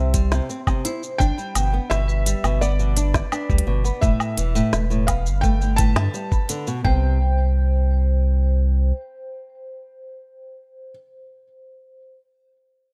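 Delicate and warm, this folktronica piece moves at an unhurried pace in a straight 4/4, cut from a longer work. A felt-muted upright piano carries the melody with a soft, mellow tone and audible action noise, while a vibraphone struck with hard mallets adds a bright, ringing second line with a medium motor vibrato, both touched with tape echo. Beneath them, a fingerpicked flamenco guitar plays arpeggios with an occasional finger squeak, and a round sine sub bass sits deep and up front. A muffled, thumpy pitched-down kick and an organic electronic kit with a woody snare, crisp hats, shaker and woodblock drive the groove until the drums stop around 7 seconds, leaving the guitar, bass and then the piano to fall away before the vibraphone rings out last at 12.2 seconds. The harmony moves from C through G, Esus4 and Gadd9 before settling on C5, all set in a studio reverb.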